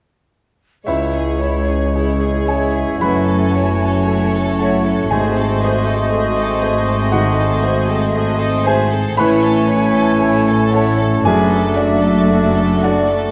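Clarinet and bassoon sound first at 0.8 s, joined a moment later by the full ensemble in this passionate, tragic classical passage in C# minor, cut from a longer piece and moving at a slow 58 BPM with a rubato feel. A clear, open baby grand piano carries the melody across a broad range alongside a violin section with light vibrato and a soft, sul tasto touch. The flute and a second, floating violin section play second lines in the background, joined by a distant oboe on a further second line. Beneath them, a dark French horn section holds sustained chords, the very quiet, punchy bassoon adds accompaniment, and cello and double bass sections anchor the bass with intimate, close bowing. A viola section with a pure tone enters at 3.0 s, and very quiet timpani with medium mallets sound briefly from 5.1 s to 6.6 s as the harmony reaches a G#7b9 chord. The progression then turns through A and D/F#, all of it bathed in the reverb of a recital hall.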